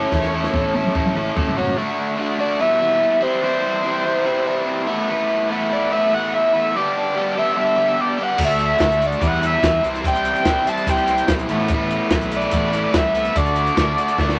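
A screaming, gritty synth lead with vibrato carries the melody over a bright, double-tracked overdriven guitar riff, a very quiet flute-like tonewheel organ on slow rotary, growly fuzz bass and a dark, punchy compact cocktail kit that opens with a fill, before bass and drums drop out by 1.8 seconds and return at 8.4 seconds, joined at 8.8 seconds by barely audible hollow handclaps, giving this wistful, carefree indie rock excerpt a moderate club ambience.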